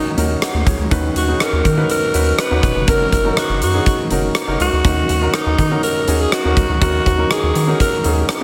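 A breathy alto saxophone carries the melody in this short excerpt from a longer 1980s-style pop piece, its bright, raspy tone colored with vibrato, scooped notes and a touch of delay. Moving at 122 BPM in a straight 4/4, the mood is urgent and moody, built over chords of Ebm7, Badd9/D#, Gb6 and back to Ebm7. A clear concert grand piano with deep, natural low end supplies the accompaniment from the start, while a rubbery square-wave bass enters at 0.2 seconds, hollow and bouncy with a resonant filter pluck and a moving notch. The huge arena drum kit comes in at the same moment, sitting up front with a punchy kick, hi-hat and rim click in a pumping hall sound. Light reverb surrounds the mix, and the whole passage runs about 8.4 seconds.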